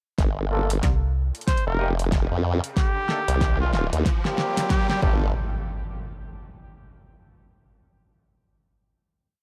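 Glitch hop at 93 BPM in G minor, playful and funky, builds over a swung beat from a punchy layered electronic kick and a pop drum kit with a fat snare and metallic hats, while a saturated formant-sweep wobble bass with chorus sits up front, a snappy FM slap-like bass adds a brief chopped phrase, a gritty filtered horn section pumps with syncopated rootless stabs and tape echo, a bright trumpet plays short vibrato phrases from 1.5 seconds, and a background riser and impact carry the dry, gritty hardware mix into a final hit at 5.3 seconds.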